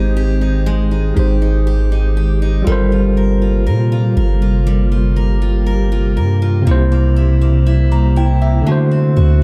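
Moody and longing, this slow R&B excerpt, cut from a longer piece, moves through Abmaj7, Gm11, C7 and D7 over a dark production with light reverb. A deep, sine-like 808-style bass sits up front with long, mellow, decaying notes, while a clean tine electric piano carries the accompaniment and a bright, full-bodied picked steel-string acoustic guitar plays arpeggios throughout. In the background, a glassy, ethereal FM pad holds sustained chords with a slow attack, colored by ensemble chorus, built-in reverb and phaser.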